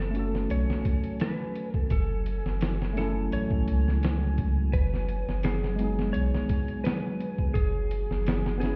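Heard muffled as if through a wall, with stone-room reverb and vinyl crackle, this brooding, cinematic trip hop excerpt moves at 85 BPM in F# dorian, built on a pitched-down, gritty sampler-style drum kit with a thumpy kick and a round, deep dub sub bass sitting up front. A dark, detuned ambient pad with chorus and 12-bit sampler grit sustains chords beneath a clean tine electric piano that shimmers with harmonic tremolo and tape echo through a combo amp. Over this, a clean lap steel guitar played with fingerpicks and slide carries the melody through tape echo, as the chords move from F#madd9 to Amaj7/F# and on to G#m/F# and C#7(no3)/F#, all over an F# in the bass.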